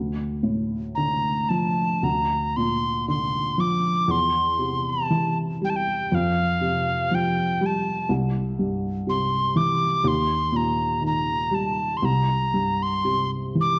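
A felt-muted upright piano opens at 0.0 seconds, its low accompaniment soft, mellow and intimate, with a thick, muffled tone and short sustain. At 1.0 seconds a tin whistle enters with the melody in its high register, an airy metal sound with a crisp, chiffy attack and vibrato. This is a mournful, longing Celtic slow air in 4/4, played with a free, rubato feel, and cut from a longer piece. The harmony drifts from Dm through Bb/D, C/E and Fsus2 to C, then to a darkening Eb before returning to C. Both instruments sit up front in a moderate recital-hall reverb, and the production is dark and warm through to the close at 13.8 seconds.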